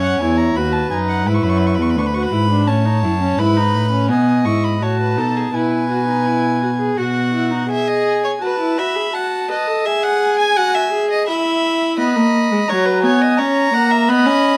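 Baroque-style fugue for string quartet in 3/4, elegant and lively, heard as a short section cut from a longer piece, with period-style gut-string tone throughout. The first violin carries the melody in a nasal, reedy voice with a smooth top, while the second violin weaves a rich second line with light vibrato and the viola fills in an up-front accompaniment. The dark, bowed cello anchors the bass until it stops at 7.7 s, leaving the upper three strings to finish in light reverb, captured by close, detailed microphones.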